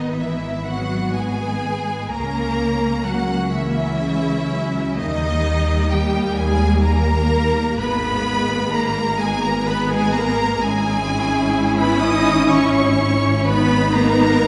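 The melody rides on a rich, close violin section, bowed with vibrato in a smooth, even line high in its register, while a second, more focused and distant violin section sings a lower line beneath it. This slow, elegiac movement for string orchestra unfolds in G# minor at 42 beats per minute in dotted quarters, its 6/8 pulse stretched by rubato into a melancholic, hovering sway. A dark, lush viola section fills the middle with expressive, soft-attacked accompaniment, the cellos supply a clear, smooth bass line set in the background, and the double basses sit up front with a deep, even foundation. The harmony moves from G#m through A#dim/C#, D# and C#m/G# before settling back on G#m, a mournful cadence that suits this fragment cut from a longer piece. The strings are heard from further back in a concert hall, bathed in a reverberant 2.2-second decay with a softened, dulled top end.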